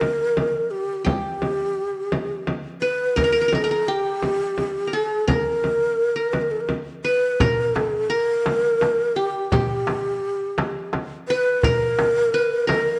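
Festive and warm, this short excerpt from a longer Arabic maqam ensemble piece moves at 57 BPM in a straight 6/8, with a breathy, end-blown low ney carrying the up-front melody between G4 and B4 with vibrato and a crisp attack, a bright-edged, plectrum-plucked qanun with triple strings playing a second line in the same range, a deep, large frame drum played with soft hands up front throughout, and a dry, crisp metal-shell darbuka joining at 7.4 seconds, all set in a moderate recital hall reverb.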